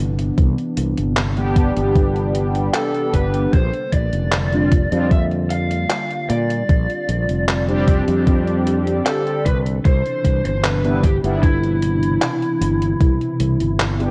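Woozy and nostalgic, this vaporwave piece drifts along in a straight, unhurried 4/4, its whole mix colored by worn cassette tape with warbly pitch drift and a light digital ambience. A lo-fi, detuned pad sits in the background holding sustained chords through a slow attack, roughened by 12-bit sampler grit, chorus and its own reverb, while a growly, punchy fretless electric bass sits up front with tube saturation. A gated 80s drum machine of handclaps and hi-hat enters at 0.2 seconds, carrying gated reverb, overdrive and sampler grit and sounding re-recorded in a small room, and an overdriven electronic kick joins it at 0.4 seconds, thumping up front. From 1.4 seconds a round, dark synth brass built from detuned sawtooths adds sustained accompaniment, with a filter sweep, phaser, lush chorus and tape echo. A picked electric lead guitar through a small cranked amp enters at 2.8 seconds with the melody, its overdriven tone smeared by tape echo. 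The harmony moves from Cmaj9 to Bb6 and back to Cmaj9 in this short cut from a longer piece.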